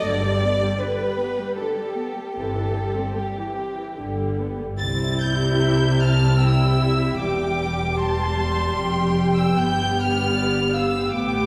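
Tender and serene, this short excerpt from a slow romantic movement for string orchestra moves at 76 BPM in a rubato 3/4 in C major, its harmony settling from G through C/G and C/E before returning to G. One violin section carries the melody up to A6 with light vibrato and a smooth top, a second violin section adds a supporting line, and violas play the accompaniment with soft, bowed sul tasto tone. Beneath them, dark cellos and double basses hold the bass from 0.1 seconds. The close, intimate playing is bathed in a wet scoring-stage reverb, heard from further back in the room, that lends it a spacious glow.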